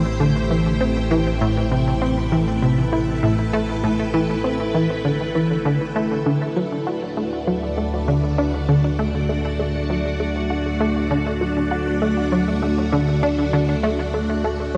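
A punchy, funky analog bass riff with a fast-attack, decaying filter pluck, wave-folded edge, chorus and delay sits up front in this cosmic, hypnotic stretch of sequencer-driven space music at 99 BPM, cut from a longer piece. Above it, a lush vintage string machine ensemble holds soft-attack chords colored by phaser and ensemble chorus, moving from Am7 to D at 6.3 seconds. Beneath both, an evolving analog drone with pulse-width modulation anchors the low end, all set in a vast, echoing cathedral reverb.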